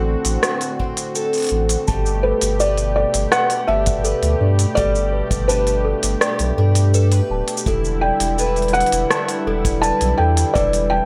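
This autumnal, delicate folktronica excerpt opens on a detuned sawtooth pad with chorus, a shimmering, octave-doubled twelve-string acoustic guitar picking arpeggios through digital delay and plate reverb, and a round sine sub bass sitting up front, moving over D7/A, Gadd9 and Em7 at 83 BPM in a straight 4/4. An organic electronic kit with crisp hi-hat, rim click and shaker arrives at 0.2 seconds, joined by a tight, airy acoustic kick played with bundle sticks. A bell-like celesta second line enters at 1.9 seconds, and a dark, felt-muted upright piano carries the melody from 2.2 seconds, its intimate vintage tone bearing audible action noise beneath the delay and reverb.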